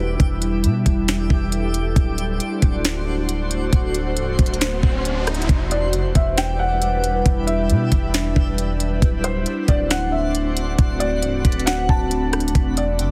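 Atmospheric cloud-rap hip hop in E minor at 136 BPM with a half-time feel, this hazy, ethereal excerpt sets an airy, detuned pad with chorus, reverb, phaser and sidechain pumping over a deep, boomy 808-style bass, a twinkling granular shimmer and a trap kit with knocking kick, sharp snare and crisp hats, while a brief electronic riser at 4.3 seconds leads into a soft, felt-muted upright piano melody at 5.7 seconds, filtered and tape-echoed, all within a heavily compressed, radio-like digital ambience.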